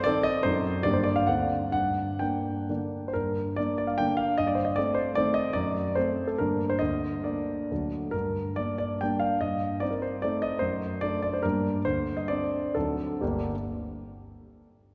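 A wet concert-hall reverb with a long 2.5-second tail surrounds a solo concert grand piano, which sits up front with a warm tone and a deep bass. The piece is a wistful, nostalgic romantic dance in triple time, shaped by dotted rhythms and a free, rubato feel. Its harmony leans on dark, yearning colours, moving from diminished and half-diminished chords through dominant sevenths with flattened ninths back to the home minor chord. The opening phrase returns at 3.1 seconds and unfolds at greater length, and a new section begins at 13.2 seconds. The piano plays from the start until 13.6 seconds, in this short passage cut from a longer piece.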